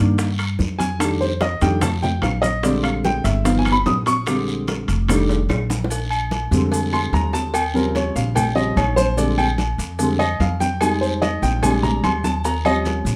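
A moderate studio ambience frames this danceable, sophisticated Afro-Cuban jazz excerpt, with a boxy upright piano up front taking a solo over rootless Cm7, rich Bb13, Eb13 and altered G7 harmony, while a thumpy, dark pizzicato upright bass on gut strings sits close beside it. Behind them, ringing congas, tight high-tuned bongos and cowbell and distant woody claves fill out the groove. A close, dry, raspy guiro and grainy, saturated maracas add texture, and vintage band-limited timbales and agogo bells add a metallic sheen. A drum fill at 5.3 seconds marks the return to the opening section, and the passage stops at 13.2 seconds, cut from a longer piece.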